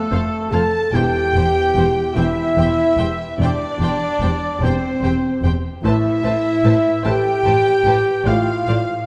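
A slow, rubato 6/8 pulse at 49 dotted-quarter beats per minute carries this tender, uplifting cinematic film-score excerpt in C major, moving from F through C/E to Amadd9 and resting on a rootless Dm/A near 8.3 seconds. Up front, a mellow French horn section holds tight, smooth-topped sustained chords with light vibrato, while an intimate grand piano in the background plays the accompaniment, its natural action noise audible. The melody sits high in a clear, intense symphonic violin section, distant and lush with vibrato, entering at 0.1 seconds. A second line is shared by an airy flute section with crisp attacks, a rich, focused studio violin section, and a roomy solo oboe in classical style with light vibrato. Beneath them, a smooth, even viola section fills the middle, a dark, expressive cello section and a rich double bass section anchor the low end, and the symphonic strings fall away around 8.8 seconds. 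Moderate scoring-stage reverb gives the dark production a spacious, cohesive glow.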